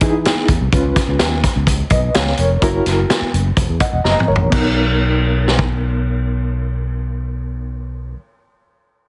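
Heavily compressed and squeezed into a narrow, radio-like band with a dull top, this short cut from an uptempo 1960s-style soul tune has a light reverb and a danceable, warm mood. It moves at 126 BPM in a straight 4/4 in B major, with the harmony passing through Emaj7, C#7 and F#7 before settling on Bmaj7 at 4.5 seconds as a new section begins. A reedy, worn electric piano carries the accompaniment through its built-in speakers, slightly out of tune, with a fast tremolo and plate reverb, and it adds a fill starting at 3.6 seconds. Up front, a growly, amped fretless electric bass sustains low notes with an analog chorus. A vintage acoustic drum kit with a punchy kick, medium-tuned snare, toms, hi-hat and dark crash cymbals sits mid-forward in a studio room, plays a fill just before the section change, and drops out at 5.7 seconds.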